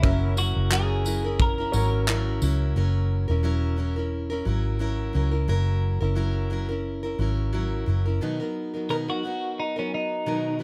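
This short cut from a longer acoustic pop piece sounds dry, with little reverb, moving at 88 BPM in 4/4 with a gentle sixteenth-note swing. The mood is heartfelt and carefree, resting on an F#7 chord before shifting to Bmaj7 at 8.2 seconds. A picked, full-bodied dreadnought steel-string acoustic guitar, plugged in and up front, carries the accompaniment throughout. A clean, twangy, compressed twelve-string electric guitar plays the melody at the opening and returns near the end. A woody upright piano sits in the background early on, and a loose indie kit of punchy kick, handclaps and tambourine pumps in a studio room during the opening seconds. A dark, round, foam-muted vintage bass, fingered and amped, holds the low end up front until it stops at that chord change.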